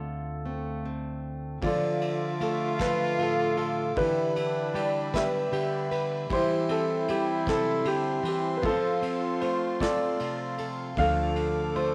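A baby grand piano carries the melody up front in this melancholic, reflective acoustic folk-pop ballad fragment in 6/8, its long sustain touched by a slapback echo. Close beside it, a fingerpicked nylon-string guitar sounds bright with fresh strings and audible finger squeak, while a felt-muted upright piano murmurs soft arpeggios in the background. A woody, thumpy pizzicato upright bass opens the piece, drops out at 1.6 seconds and returns at 11.0 seconds. From 1.6 seconds, a French horn with vibrato adds a second line, a distant chamber string section floats sustained bowed chords, and a brushed drum kit with dark cymbals, a medium-tuned snare and a tight kick joins. The harmony moves from Dm7 through Dmadd9, G6/D, C/E and F before settling on Dm, all bathed in a wet spring reverb and a small room.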